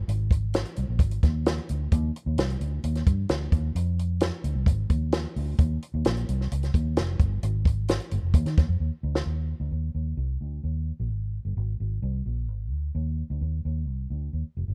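A dry, dark production with little reverb frames this short cut from a longer uptempo 1960s-style soul tune, warm and danceable in a straight 4/4. A compact cocktail drum kit sits up front with an acoustic, natural sound, a high-tuned snare, punchy kick and hi-hat, ending its part with a fill from 8.8 to 9.3 seconds. A vintage muted fingered electric bass, round and foam-muted through an amp, carries on alone after the drums drop out at 9.3 seconds and runs to the end at 14.7.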